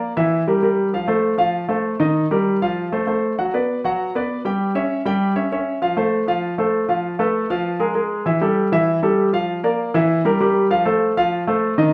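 Fiery and danceable, this short latin excerpt cut from a longer piece moves at a brisk 196 BPM in a straight 4/4, with a lone grand piano carrying the whole 11.9 seconds. The piano sounds clear, polished and up front, ranging from D#3 to G5 through shifting harmonies that open on Edim and F and pass through Gmaj7, C#dim/G and Bb5 before the opening idea returns at 8.3 seconds. A generous, wet studio reverb gives the piano a roomy, live-in-the-room feel, while the top end rolls off above 11 kHz.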